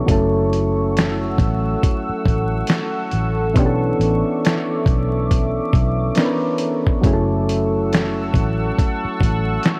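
Melancholic and reflective, this lo-fi hip hop excerpt sways in 4/4 with a swing on the 16th notes. A dusty soul sampler-style drum kit sits up front, its thumpy kick, fat snare and hi-hat sounding gritty and compressed, with the character of a small room. A vintage muted fingered electric bass, dark and round with tube saturation, holds the low end from 0.1 seconds. Soft electric-piano-like synth keys play a gentle, decaying accompaniment through chorus and a low-pass filter, while a deep, moody ambient pad sustains detuned sawtooth chords with a slow attack and built-in reverb. The harmony moves from F#m7 to Bm11 at 3.6 seconds and back to F#m7 at 7.0 seconds, all under light reverb, worn cassette tape warble, pitch drift and vinyl crackle.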